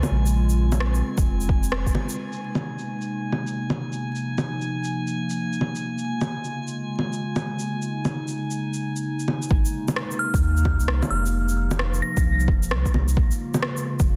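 Future garage with a nocturnal, wistful mood, built on a warbling, nostalgic pad with chorus, reverb and sidechain pumping, overdriven electronic bongos, shaker and rim click, and a drifting glass-harmonics texture that lasts until 9.5 seconds. A round, tube-saturated sub bass and a deep, overdriven kick appear briefly near the start, with a band accent at 1.7 seconds, then return at 9.5 seconds, before a crystalline FM bell melody with delay enters up high at 10.2 seconds. The dense, heavily limited master carries light digital ambience and vinyl crackle, and the recording is cut from a longer piece.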